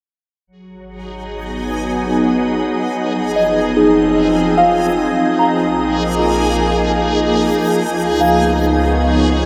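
A round, deep analog bass fades in at 0.5 s, joined at 1.0 s by a bright, up-front organ-like pad of sustained chords with ensemble chorus and a dreamy reversed swelling texture, before a soft FM synth bell enters at 3.4 s with mellow arpeggios treated with chorus, phaser and tape echo, the whole reflective, serene ambient piece in 3/4 set in a vast, echoing cathedral reverb as the chords move through G#m7, Fm7, A#7sus4 and C#9.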